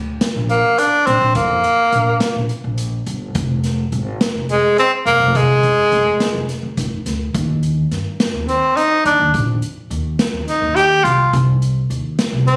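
Progressive instrumental band music in 7/8 at 210 BPM (eighths), bright and driving, drawn from a longer piece that moves between chordless stretches and Fm and Cm chords. A woody, thumpy upright bass with gut strings opens at 0.0 seconds, joined at 0.2 seconds by an airy street-band drum kit of hi-hat, boomy kick and medium-tuned snare in a big room. At 0.5 seconds a breathy, whispered tenor saxophone with soft attack and vibrato takes the intimate, up-front solo melody, all captured on a phone in the room with light reverb.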